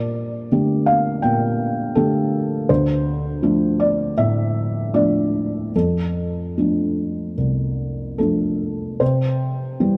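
Rubato 4/4 at a loose 71 to 83 BPM gives this neoclassical minimalist piano piece in G dorian a reflective, intimate drift. A felt-muted upright piano plays alone from 0.0 to 10.0 s, spanning C2 to G5 through Gmadd9/Bb, Dm7 and F6 before landing on C at 9.0 s. Its thick felt gives a soft, mellow, short-sustaining tone, with audible action noise up front, set in light reverb within a dark production.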